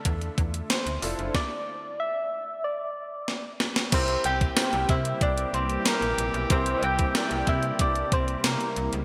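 Bright, digital 1980s-style production in a lush hall reverb frames this nostalgic, dramatic pop excerpt at 93 BPM: a gated drum machine with a thumpy kick and gated snare sits up front over a snappy, metallic FM slap bass, a clear grand piano with analog chorus and silky string-machine chords, while a round, gentle struck synth lead with chorus, phaser and delay carries the melody, a drum fill at 3.3 s ushers in a picked mandolin second line at 3.9 s, and punchy horn stabs arrive in the background at 5.2 s.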